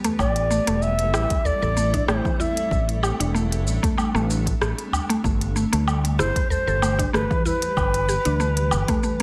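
A blurred granular cloud pad with sampler grit and sidechain pumping, a woody, round mallet-like synth pluck playing arpeggios through chorus, tape and delay, a crisp-hatted organic electronic drum kit of hi-hat, rim click, shaker and woodblock, and a barely audible ringing bronze singing bowl open this meditative, earthy organic downtempo piece in A minor at 95 BPM, with a gentle 16th-note swing. At 0.2 seconds a pure, crisp-chiffed cedar flute with vibrato and tape echo takes the melody up front, joined by a fretless electric bass with subtle chorus and a punchy, overdriven electronic kick, while a small, distant udu enters in the background at 1.3 seconds. The harmony moves from Am7 to Em/G at 5.2 seconds in this short cut from a longer piece, set in light reverb.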